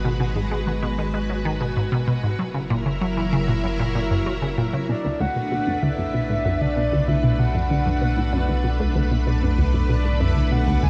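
This short cut from a longer piece of ambient, sequencer-driven space music opens with a lush, vintage string machine holding sustained chords, a squelchy, resonant blip pluck repeating a riff through phaser and delay, and a round analog bass underneath, all moving at 96 BPM in a straight 4/4. The harmony passes from G#m7 to F#7 at 2.4 seconds before settling into B minor on a Bm7 at 4.9 seconds. At that point a breathy, flute-like synth lead enters with the melody, soft-edged and gently vibrato-laden, carried by analog chorus, shimmer reverb and delay. Across the same stretch a filter sweep works over the arpeggiated synth sound, adding movement to the cosmic, expansive mood. The string machine's ensemble chorus and shimmer reverb blend with a moderate plate reverb to give the whole a spacious, floating feel.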